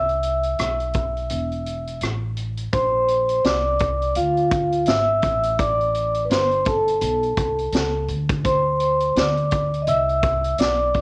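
A home cassette recording with light reverb frames this cool, smoky jazz-hop piece at 84 BPM in A minor with a swung 16th feel, where a mellow, metallic soft-mallet vibraphone with slow motor vibrato and plate reverb solos up front, including a break from 1.3 to 2.7 seconds, over a woody, thumpy pizzicato upright bass and a vintage drum kit with cassette-tape colour whose punchy kick, high-tuned snare, rim click and hi-hat carry a rolled-off top, as the harmony moves from Amadd9 to Bbadd9 at 2.7 seconds, then through Am9 and Dsus2.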